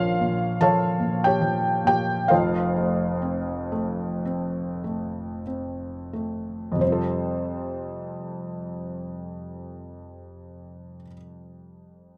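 The felt-muted upright piano sits up front in a light reverb, its soft, mellow tone intimate and carrying audible action noise. This brief cut from a longer classical piece is lyrical solo piano with a tender, warm mood, played in 4/4 with a free, rubato feel. The single instrument spans from F1 up to A5. Over the first 6.8 seconds the pace slows as the harmony moves from B-flat minor to F. A second section then opens at 6.8 seconds on an F add nine chord and carries through to the close at 12.2 seconds.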